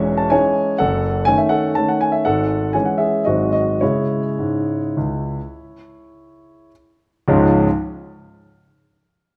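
Bittersweet and nostalgic, this short classical piano waltz in C# minor moves in a supple 3/4 with rubato, its tempo drifting between 100 and 131 BPM. A clear concert grand plays alone from the start until 7.7 seconds, ranging from a deep bass E1 up to C#6, with a natural, up-front presence. The harmony passes from C# minor through a half-diminished chord and a G#7 before settling back on C# minor, and the pace slows from 3.0 to 7.3 seconds. At 7.3 seconds a new section arrives on a C# major chord, briefly brightening the close. A wet recital hall reverb lends the sound a lingering, spacious bloom, and the passage is cut from a longer piece.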